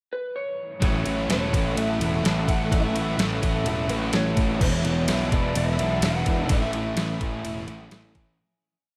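At 0.8 s a detuned 8-bit drum machine sets a straight, up-front pop groove at 127 BPM in 4/4, entering together with a bright, overdriven fuzz bass driving eighth notes and a stack of riffing guitars: crunchy strums with whammy-bar dips and reverse reverb, sludgy double-tracked ringing chords, dark thick fuzz, and faint twangy twelve-string arpeggios. Over this wistful, blissful shoegaze and dream pop piece in A major, a slightly broken-up, lo-fi guitar through a small old amp carries a motif-based melody from the start, bathed in lush chorus and tape echo, while a silky vintage string machine pad with ensemble chorus settles in at 1.7 s. The dreamy mix is soaked in hall reverb and fades out from 6.5 s as the chords move from A6 to E7sus4 and Amaj7.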